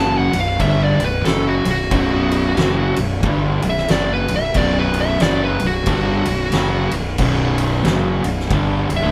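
A heavy, hypnotic stoner and doom metal excerpt in B minor at 91 BPM, swung in 4/4 and resting on a single Bm chord, captured as a band playing live in one room with light reverb. A dark, fuzzed lead guitar solos up front across the whole clip, while a crunchy overdriven guitar and a double-tracked, compressed fuzz guitar grind out the low riff in the background, over a growly, punchy fingered bass with overdrive. An oversized, low-tuned acoustic kit enters at 0.3 seconds with a fat snare, punchy kick and ride cymbal sitting natural and forward in the room.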